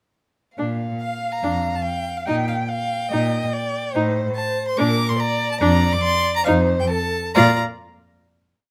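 A clear, smooth first violin carries the melody in this lively, graceful classical-period movement for string quartet, entering at 1.0 seconds with an even, vibrato-tinged line high in its range. Just before it, at 0.6 seconds, the other three players begin together: a second violin, rich and up front, adds an expressive counter-melody with portamento and sustained chords. The viola fills the middle with soft-attack, warm accompaniment, mixing short accented chords with held ones. Beneath them a focused cello sets down sustained bass notes on the beats. The pace is quick at 142 BPM in 4/4 and Bb major, yet played with rubato, and the harmony passes through Ebmaj9/Bb, a diminished chord and F7 before the quartet settles on a final Bb5 chord at 7.4 seconds. Close, detailed microphones and very little reverb leave each bowed line intimate and distinct.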